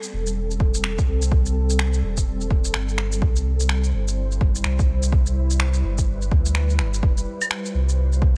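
An up-front, deep electronic kick with overdrive grit drives this melancholic, rainy future garage excerpt at 126 BPM in 4/4, entering at 0.6 s over a swung sixteenth-note groove. Beneath it sits a round, sine-based sub bass with fast attack and sidechain pumping, while a layered, overdriven bed of electronic shaker, finger snaps and claves adds texture in a small room ambience. An ethereal, airy pad of detuned unison sawtooth and triangle tones, with slow attack, ensemble chorus and reverb, breathes through sustained Am7, C and Fsus2 chords, pumping gently with sidechain in a mellow digital ambience.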